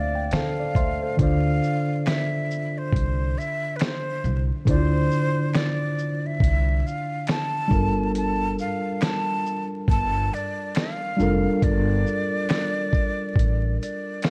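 A gritty, compressed sampler-style drum kit with a thumpy kick and fat snare sits up front in this hazy, nostalgic lo-fi hip hop excerpt, where a worn, slightly out-of-tune tine electric piano with a cassette-tape tinge lays Dm9 chords that move to Gm9 at 7.7 seconds, a woody pizzicato upright bass anchors the low end, a breathy jazz flute sings an expressive melody with vibrato and a soft attack, and very quiet, dry finger snaps join at 2.1 seconds, all wrapped in a dark production with vinyl crackle and light reverb.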